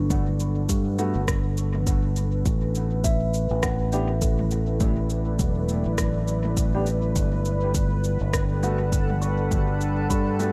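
A punchy, up-front fingered electric bass anchors this spacious, peaceful ambient dub excerpt, moving at 102 BPM in 4/4 with a swung sixteenth-note feel. A deep, dark pad of detuned sawtooth and sine layers with a sub octave holds sustained chords through chorus and its own reverb, slowly shifting from Gmaj7 to Asus4 and back to Gmaj7. A layered electronic kick sits low, while an organic electronic kit adds cabasa, rim clicks and toms through a dub echo. In the background, a mellow kalimba rings out hollow, fingertip-plucked arpeggios with dub echo, and a woody upright piano enters at 1.0 seconds with echoed stabs. At 8.1 seconds a soft, reversed granular texture swells in, bright and dreamy, adding a final glow to the lightly reverberant space.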